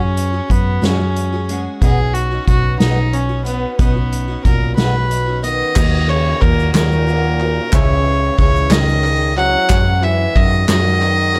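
A dark, warm studio sound frames this short cut from a longer indie folk piece, nostalgic and uplifting, moving at 61 BPM in a straight 6/8 in B major. Up front, a single bowed fiddle carries the melody with a rich, nasal, reedy gut-string tone. A round, amped hollow-body short-scale electric bass holds the low end, while a boxy, shimmering, octave-doubled twelve-string parlour guitar is picked in the background. A soft-mallet drum kit joins at 0.2 seconds, distant and roomy, with a punchy kick, medium-tuned snare, hi-hat, ride and crash. The arrangement builds as a present, classical-style solo trombone adds a second line at 4.5 seconds, and the new section at 5.8 seconds brings a very quiet, woody upright piano with short sustain, hollow vintage group handclaps and a grainy, saturated tube shaker. The harmony moves from F#sus2 and Badd9 to D#m and C#m before returning to F#sus2.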